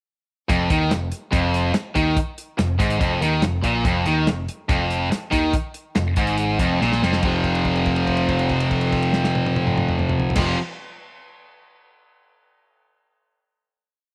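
A straight 4/4 pulse at 142 BPM drives this brooding, swaggering classic rock piece in F minor, where a crunchy overdriven guitar and a bright, up-front distorted guitar play a single-note riff, a growly, punchy picked bass doubles it with simple root-and-fifth lines, and a damped 70s drum kit with dark cymbals, a tight kick and a pop groove sits in a small room with light reverb, until a drum fill at 6.8 seconds leads into a final F5 chord held from 7.2 seconds to the close.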